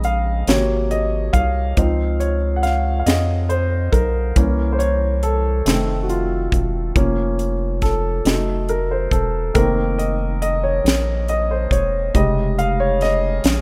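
A warm, woody upright piano carries this slow, solemn gospel excerpt in 6/8 at 46 BPM, playing solo throughout its 13.6 seconds over soulful extended chords such as Ab7, Dbmaj9, C7b9 and a closing rootless Bbm9/F. Beneath it, a rubbery, hollow square-wave bass with a dark, resonant filter pluck sits up front, while an airy, polished fusion kit adds a high-tuned snare, punchy kick and hi-hat. The sound has the studio ambience and rough balance of a home demo mix.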